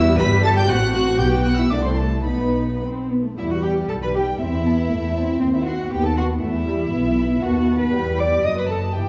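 Up-front, rich double basses and dark, woody violas anchor this stormy, urgent classical-period string orchestra excerpt in E minor at 118 BPM in a rubato 2/4, with soft-toned cellos beneath a floating, pure violin melody and an intimate chamber violin second line entering at 0.2 seconds, all heard through a worn, warbling cassette-tape haze and moderate scoring-stage reverb.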